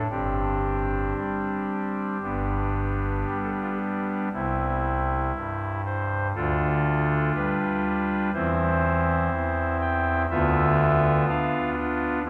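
Classical chorale-style music for solo pipe organ, this short excerpt from a longer piece moves at a slow, flexible 56-62 BPM in 4/4, its rubato giving the phrases a serene, reverent breath. A soft reed voice, an oboe stop with a romantic voicing, carries the whole passage alone and sits up front, spanning G1 to G5. The harmony rests in C major, opening on Gsus4 before settling to G, then C at 4.3 seconds, and moving through G7/D and C/E to close on Bdim/D at 10.3 seconds. A church reverb with a long 3.3-second decay wraps each chord in a lingering halo, and the production leans dark and warm. Tuned to A4 = 442 Hz, the 12.3-second fragment feels hushed and devotional.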